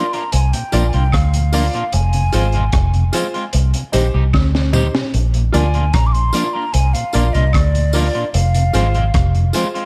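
Roots reggae at a relaxed 75 BPM in Bb mixolydian, this laid-back, warm clip is cut from a longer piece and moves through Bb, Fm and Cm before returning to Bb and Fm. A hollow, airy jazz flute carries the melody between D5 and D6 with a straight, tongued tone, trailing a dub echo. Beneath it, an electric guitar at the edge of break-up plays scooped, picked accompaniment with subtle chorus and its own dub echo, while a soft tonewheel organ with key click and slow rotary speaker sits in the background. A worn, woody upright piano, slightly detuned, adds stabs, and a vintage foam-muted fingered bass sits round and up front, entering at 0.3 s. The crunchy breakbeat kit sounds gritty and saturated with a high-tuned snare and punchy kick, playing a fill from 4.3 to 5.1 s, and a tambourine and woodblock part, with egg shaker and group handclap, joins softly in the background at 0.7 s, all in a dry mix with little reverb.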